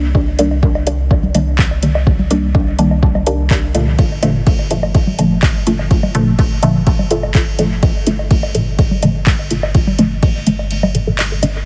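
A straight 4/4 pulse drives this nocturnal, hazy dub techno fragment, cut from a longer piece, anchored by an overdriven, layered electronic kick that sits up front with a deep, produced punch. Around it, a soft vintage rhythm box adds handclaps, metallic hi-hats and ride cymbal, while analog-sounding woodblock and congas pump with the sidechain, both parts trailing dub echo. Underneath, a clean, smooth sine sub bass holds sustained, dark tones and breathes with the sidechain. The filtered chord stabs are the focal point: muted sawtooth plucks with a fast attack and decaying tail, treated with phaser, dub echo and a filter sweep across the whole passage as they move from Cm9 to Gm9 at 4.0 seconds. A brief break arrives at 10.7 seconds, and the kick drops out at 10.3 seconds, just before it. The mix is dry and heavily compressed, with a radio-like squash and a bed of vinyl crackle.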